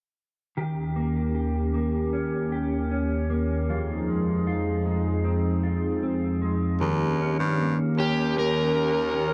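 A mellow, clean electric guitar opens this ethereal dream pop excerpt at 77 BPM, playing compressed, fingered arpeggios through lush chorus and digital delay. A hollow, flute-like pad with slow attack and chorus sustains Eb7 and Fm7 chords beneath it. At 6.8 seconds a bright, punchy baritone saxophone with vibrato takes the bass line, and at 8.0 seconds an overdriven slide guitar adds a dark, high melody, all bathed in a huge, wet ambient reverb.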